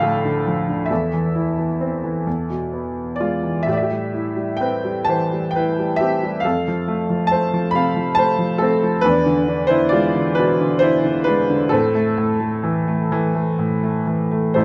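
Rubato in 6/8, this reflective, wistful passage of lyrical classical music is played by a solo baby grand piano, its tone clear, worn and open, with long sustain and an up-front presence across a range from A1 to B5. Close, detailed microphones and light reverb frame the instrument as the harmony moves from Dm through E and Am7 to F and E7, settling on Am at 11.7 seconds. Cut from a longer piece, the fragment runs 14.6 seconds.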